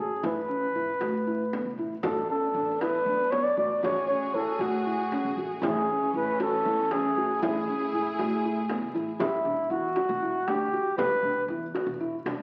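Set in a straight 7/8 at 235 BPM counted in eighths, this contemporary chamber piece, cut from a longer work, feels hopeful yet restless. A mellow flugelhorn with light vibrato carries the melody up front until 11.5 s, over soft, intimate arpeggios from a felt-muted upright piano with audible action noise, a woody, thumpy pizzicato upright bass on gut strings, and a compressed, saturated frame drum struck with hard hands. A lush bowed string section holds smooth chords from 2.0 s to 9.2 s through harmonies such as Bm7/A, Amaj7 and E, and the recording sounds as if heard in a moderate concert hall and pressed onto a very old 78 rpm record, with vinyl crackle throughout.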